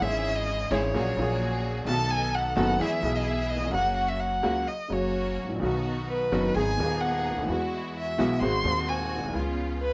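Melancholic and sultry, this tango fragment unfolds with a rubato feel as an expressive, up-front violin carries a solo with vibrato, soft attacks and portamento over a clear, intimate upright piano with audible action noise, smooth, distant stabs from a rich symphonic string section, and a thumpy pizzicato upright bass on gut strings, all set in light reverb.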